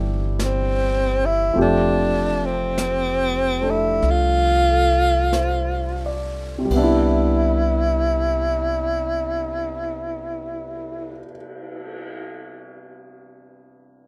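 A breathy tenor saxophone with scooped notes and vibrato carries the tender, intimate melody of this slow jazz ballad fragment, set over a concert grand piano with audible action noise and long sustain, a woody, growly upright bass, and softly brushed drums, with the pulse slowing through the first 6.7 seconds in a rough home demo mix.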